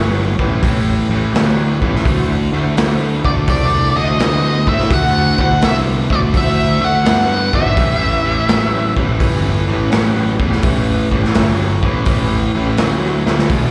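Heard as a live gig through the venue's PA with small-room and recital-hall ambience, this gritty, driving swung blues rock and southern rock power-trio fragment moves from A7 to D7 and back to A7 as a bright, double-tracked cranked stack guitar riff rides over up-front fuzz picked electric bass and a raw garage drum kit with a punchy kick and rolled-off top that closes on a fill at 13.1 seconds, while a thick overdriven tonewheel organ holds sustained chords through slow rotary speaker and chorus vibrato in the background and a dark octave-fuzz lead guitar with slapback and tape echo carries the melody from 3.3 to 8.9 seconds.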